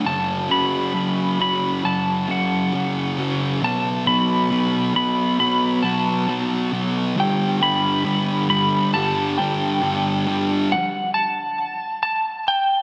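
Soaked in lush hall reverb, this dreamy, hopeful and cinematic rock fragment at 68 BPM builds for its first 10.7 seconds on a thick, double-tracked fuzz guitar riff placed up front, moving through F#5, B5 and G, while a clean, compressed lap steel guitar sings a high slide melody with volume swells and tape echo, carrying on alone until 12.8 seconds once the fuzz drops away.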